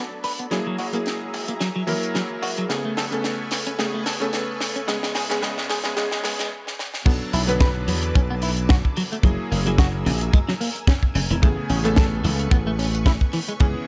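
Nu-disco at 110 BPM in B dorian with a swung 16th feel, this sensual, sleek excerpt cut from a longer piece builds for its first 7.1 seconds, with a clangy, cutting electric grand piano, a lush phased and chorused string machine sitting in the background, a punchy foam-muted slap bass, and a scooped, compressed clean guitar riff that carries a filter sweep through the build. A tight funk kit with a high-tuned snare plays drum fills before a brief stop, and at 7.1 seconds the drop arrives as an up-front, tight kick drum enters. The chords move through Bm7, F#9, Amaj9 and C#m7 in a small room.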